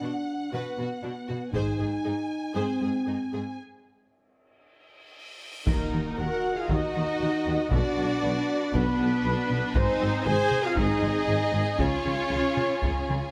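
Hard-stick taiko drums stand out in this heroic, epic orchestral film-score excerpt. They strike briefly at 1.5 seconds and return in force at 5.7 seconds, at a straight 117 BPM in 4/4. From the start, a lush violin section carries the melody with a soft attack and expressive vibrato. Beneath it sit a focused second violin line, woody violas, a dark French horn section holding chords and a distant cello section on the bass, with double basses adding a touch at the first drum hit. After a break at 3.6 seconds, a huge cymbal swell leads into an impact, and the full orchestra arrives: tight, roomy trumpet stabs, a pure, hollow flute on the second line, smooth sustained strings, intense double basses and a very quiet, mellow tuba. The chords move through Bm, Ab, Ebm and Db, tuned slightly below standard pitch at A4 = 437 Hz, and light reverb with close, detailed microphones keeps the sound clear and present.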